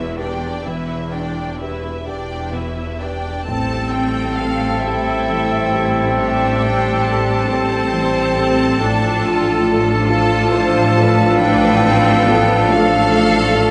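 A lush, vibrato-rich violin section carries the sorrowful, longing melody of this cinematic film-score excerpt, moving freely in a slow, rubato 6/8 over a second violin line, focused violas and cellos, bowed double basses with a smooth top, and a dark, felt-muted upright piano set back in the mix. At 3.5 seconds, as the harmony moves from Em7 to Am7, a pure, crisp-edged flute, a softly voiced oboe, a distant clarinet and a punchy French horn section holding sustained chords join the strings. The whole orchestra sits in a wet recital-hall reverb, settling onto Dm/A at 8.8 seconds.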